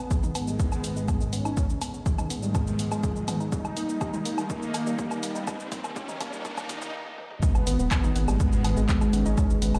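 Heard through light reverb, as if played on a big sound system in a bare room, this driving, hypnotic melodic techno excerpt in G# harmonic minor at 123 BPM builds from the start as a woody, wave-folded pluck arpeggiates under a filter sweep, together with mellow detuned synth brass with vibrato, brassy airy pad stabs and a very quiet, moody ambient pad, with a riser entering at 1.9 seconds. A dry, punchy electronic kick sits up front alongside an analog drum machine of handclaps, hi-hat, shaker, toms and woodblock, which plays fills before a brief stop. Just after the drop at 7.4 seconds a round, deep analog bass arrives, pumping against the kick as the chords return to G#m.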